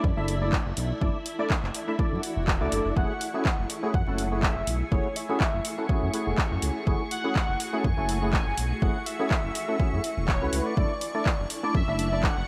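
A smooth, dark synth bass glides up front through this deep, warm deep house excerpt in F# minor at 123 BPM, swung on the 16ths and pumping against a punchy, layered electronic kick and a drum kit of handclaps and dark hi-hats that joins at 0.3 seconds. Hollow organ-like stabs and a silky, warbling string machine with gritty vintage sampler character carry chords moving from Dsus2 to F#m9, while a blurred, evolving granular cloud pad hovers very quietly behind them. After a faint electronic swell at 2.1 seconds, a velvety, detuned lead with chorus, vibrato and dub echo enters at 3.0 seconds beside a bright, wave-folded analog string pad, all set in light reverb over vinyl crackle.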